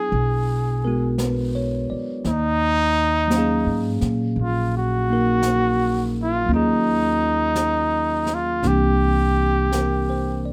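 Smoky and intimate, this slow jazz ballad in Eb minor drifts at 56 BPM with a gentle swing, cut from a longer piece. A breathy, whispered trumpet with vibrato and a soft attack carries the melody up front, over a clean, bell-like tine electric piano moving from E9 to Ebm11 and then C7. From 0.1 seconds, a woody pizzicato upright bass and a quiet brushed kit with a high-tuned snare and hi-hat join in, all set in light reverb.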